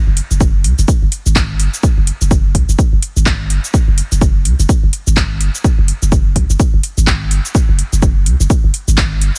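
Minimal techno at 126 BPM in 4/4 with a 60% swing on the sixteenths, carrying a quirky, cool mood through this short cut from a longer piece. A deep, sine-based sub bass with a pitch-drop attack sits up front between F#1 and C#2, pumping against the sidechain, while an up-front, tape-warm electronic kick arrives at 0.4 seconds. A quieter house kit of cabasa, handclaps and metallic hi-hats fills out the groove in a dry, close mix.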